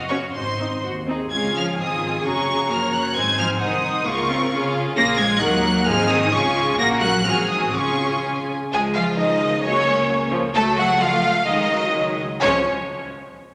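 Bright, intense cellos and a smooth double bass section open this spirited, cheerful classical-period string movement in D-flat major, joined almost at once by the full ensemble as clear violins carry the up-front melody and a rich chamber violin section sings a second line. Violas fill in an even, rich accompaniment, and every section plays bowed with vibrato at a quick 120-135 BPM in 2/4, the pulse flexing with rubato. A wet concert-hall reverb lends the cut from a longer piece a spacious glow as the harmony moves through a brief closing passage from 8.7 seconds and settles home on D-flat at 12.4 seconds.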